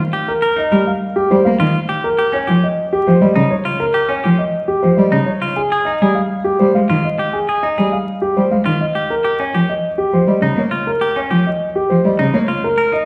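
Meditative yet urgent, this short cut from a longer piece is minimalist classical pattern music in 3/4 at 102 BPM, centred on Bb dorian and tuned slightly below standard pitch. A twangy, compressed clean electric guitar picks arpeggios from the opening, a clear grand piano with audible action noise carries the melody from 0.3 s, and a single bowed cello adds smooth, rich accompaniment with vibrato from 0.7 s until 12.4 s. The large studio reverb is wet and heard from further back in the room, with vinyl crackle over the sound, while the harmony moves through rootless Cm7 and Bbm6 chords and an Ab5.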